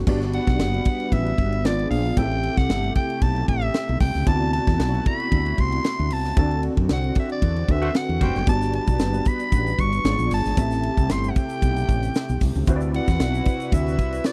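Urban and bittersweet, this cut from a longer piece of polished 1980s jazz-funk pop moves at 114 BPM in 4/4 with a light sixteenth-note swing, circling through Gmaj7, G#dim7, Am7 and D13 chords. A raspy soprano saxophone carries the melody from the start, bright and punchy with scooped notes, light vibrato and a tape echo trailing behind it. Underneath, a barky, overdriven tine electric piano pushed through a combo amp and treated with ensemble chorus plays the accompaniment, while a shimmering, detuned pulse-width pad holds sustained chords in the background. A woody fretless bass sits up front beside a tight funk kit with a high-tuned snare, hi-hat, ride and crash. The band hits an accent midway, where a mellow, soft-attacked horn section adds a brief second line at 7.8 seconds, and a grainy tube shaker joins quietly from 8.5 seconds. The sound is dry and close, like a 1970s-style studio recording with little reverb.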